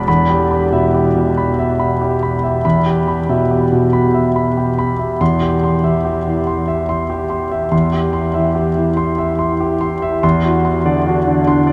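Neoclassical minimalist piano in a wistful, melancholic mood, this brief passage unfolds in a loose, rubato 3/4 as a solo concert grand moves from Em through C/E to D7/E. The piano sits up front with a polished, intimate tone, deep bass and long sustain, and its audible action noise adds a close, tactile presence. Around it, a huge, wet ambient reverb opens into a vast, echoing space that trails far beyond each chord.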